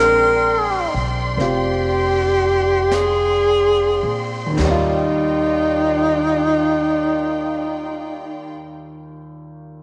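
Soaked in a moderate echo-chamber reverb, this short cut from a longer intimate, late-night jazz ballad has a slow, swung feel that is easing back through its first half. A close-miked alto saxophone sits up front, carrying the melody with vibrato in a warm jazz style, while a grand piano with long sustain accompanies beneath it. A lush, bowed string section holds smooth sustained chords, and a woody pizzicato upright bass on steel strings anchors the low end. Between 1.4 and 5.4 seconds, a brushed drum kit with dark cymbals, a high-tuned snare and a boomy kick stays in the background. The harmony moves from a Bb13 to an Ebmaj9 as the second section begins, and the piano carries on alone until 9.8 seconds.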